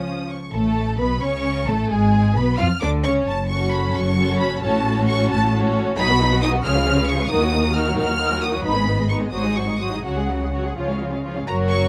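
In a 6/8 at 88 BPM with rubato, this quick, spirited classical-period string orchestra passage in F# minor sets a dark, woody first violin section singing the melody high over a distant, smooth second violin line, rich, even violas, expressive cellos with portamento, and woody double basses anchoring the bass, all bowed with vibrato in a light reverb as the harmony moves from C# through F#m and G#7 to a C#sus4 resolving to C#.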